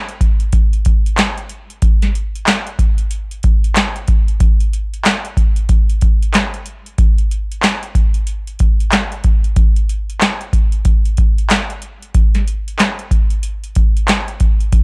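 A swung hip hop groove at 93 BPM in 4/4 runs through this short excerpt, carried entirely by a booming analog drum machine that plays from 0.1 to 14.8 seconds. The kit is deep in the kick, crisp on the snare, with metallic hi-hats and handclaps filling out the pattern. Overdrive roughens the machine, and a short room sits on the snare, clap and hats, giving them the sense of having been re-recorded in a small space while the drums stay up front. The overall sound is dry and gritty, with a cassette tape character that lends a nostalgic edge to the confident beat. It plays as a single section, cut from a longer piece.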